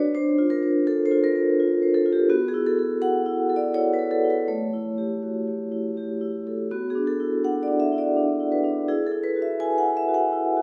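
A solo vibraphone played with medium mallets opens this short contemporary classical passage, its metallic, ringing tone up front and colored by a slow motor vibrato that gives it an airy shimmer. In a rubato 3/4, the mood is warm and playful as the harmony drifts through chords such as Bbadd9/D, B7sus4 and A6 before reaching Esus2 at 8.9 seconds. A wet recital hall reverb lets each struck chord bloom and linger around the instrument, and the passage is cut from a longer piece.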